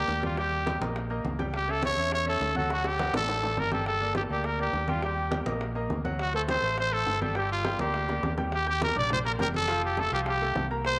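A driving straight 4/4 salsa pulse at 206 BPM sets the pace for this fiery latin excerpt, cut from a longer piece, with soft-handed congas sitting in the background and very quiet, tight, high-tuned bongos adding a small-room patter. Up front, a close-miked solo trumpet carries the melody with a raspy, gritty growl, vibrato and scooped notes in a pop style. A bright, polished grand piano fills out the accompaniment with short-sustained chords, while a fingered electric bass gives a dark, round, amped foundation. The harmony moves through G minor territory, from Eb and A7/C# through D, Gm and D7 before settling on Ebmaj7 and Fadd9 as a new section begins at 8.5 seconds. Drum fills break up the groove at 2.7 seconds and again just before that change, and a moderate spring reverb lends the mix a springy sheen.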